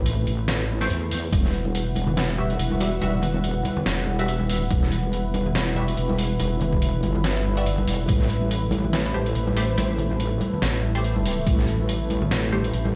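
Deep dubstep at 142 BPM in E minor with a half-time, swung feel, this brooding, meditative excerpt sets a heavy, saturated sawtooth wobble bass up front beneath a dark, slow-attack analog pad with chorus, while muted, gritty chord stabs wear phaser, lush chorus and dub echo, pitched-down trip hop drums bring hi-hat and a medium-tuned snare, ringing congas with dub echo sit in the background from 1.3 seconds, and a thumpy, tape-warm electronic kick drops in only in short bursts, most fully between 4.7 and 8.2 seconds, all heard as if played on a big sound system in a bare stone room as the chords move from A5 to Emadd9 and back.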